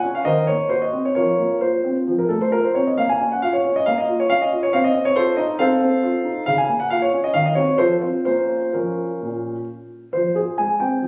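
This classical-period piano sonatina in Bb minor moves at 135 BPM in 4/4 with a rubato feel, elegant and dramatic in mood, and is cut from a longer piece. A solo concert grand carries everything from Bb2 to Ab5, its dark, mellow tone and deep bass sitting up front as the harmony passes from Cm7b5/Eb through F and Bbm to Cdim/Eb before settling on Fm at 10.1 seconds. Moderate recital-hall reverb surrounds the instrument, and the phone capture adds a layer of club ambience from the room.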